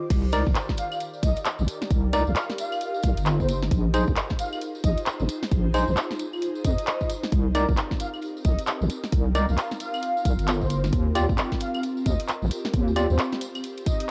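A swung two-step shuffle drives this moody, bouncy UK garage excerpt, built on a punchy electronic kick up front and a house kit of snare, handclaps, claves, hi-hat and crash cymbal whose bright hats and snare are softened by low-pass filtering. A jingly acoustic tambourine sits in the background. A deep, wobbling bass, dark and detuned with a touch of chorus, sits up front under a chord cycle of Cm7, Bb9sus4, Cm7 and Ebadd9. Overdriven tine electric piano stabs bark through a combo amp with a gritty edge, lush chorus and tape echo, while a breathy, flute-like synth lead with vibrato enters at 0.8 seconds to carry the melody. Beneath them an ethereal, airy pad holds sustained chords, its slow-attack haze coloured by ensemble chorus, phaser and sidechain pumping. The recording has a lo-fi home-cassette character with light reverb and a rolled-off top end, and the passage plays as one continuous drop cut from a longer piece.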